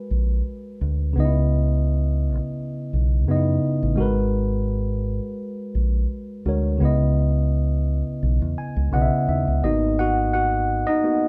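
R&B and neo-soul at 85 BPM in G# minor, introspective and smooth, with a lightly swung 16th-note feel as a worn, slightly out-of-tune tine electric piano moves between G#m9 and C#m9 chords. A dark, round fingered electric bass sits up front beside it, and the piano plays a fill from 8.2 seconds before taking a short solo at 9.6 seconds. The two parts sound like a band playing live in one large studio room with moderate reverb, cut from a longer piece.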